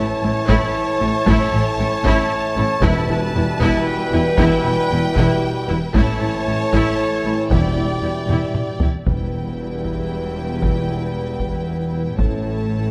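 Set in a straight 3/4 at 115 BPM, this cut from a longer cinematic, epic orchestral film score feels heroic and dark, sitting in E dorian with tuning at A4 = 436 Hz as the harmony moves between A and Em, touching Em7 along the way. A close, dry taiko ensemble struck with hard sticks drives the passage, breaking into a fill at 8.3 s, while timpani with soft mallets add round, background hits on E from 2.8 s. High violins carry a focused, lush melody with vibrato, supported by a softer-attacked, expressive second violin line in the background, and an intense viola section holds an accompanying E. Below, cellos give a smooth, even bass, and distant, rich double basses reinforce it in the background. Warm French horns and tight, very quiet trombones sustain chords, while close-miked trumpets punch out clear stabs until 8.8 s, all framed by a moderate recital hall reverb.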